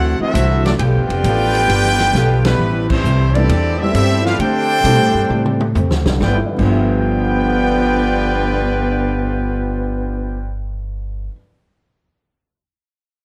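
Big band swing in G mixolydian at 133 BPM, this energetic, joyful cut from a longer piece puts a brilliant trumpet section up front on the melody with light vibrato, while a trombone section sings a second line and a dark, bucket-muted trombone section holds veiled chords in the background until 2.6 seconds. A woody, growly upright bass, a very quiet boxy ladder-braced acoustic guitar picked on old strings, and a vintage kit with a fat snare, punchy kick and dark cymbals drive the swing, the drums adding fills as the band punches accents before the kit drops out at 6.7 seconds. An intimate grand piano with audible action noise enters in the background at 3.4 seconds as the chords move from D9 through Am7 to a closing G13, all set in a moderate large studio reverb with plate reverb on the trumpets.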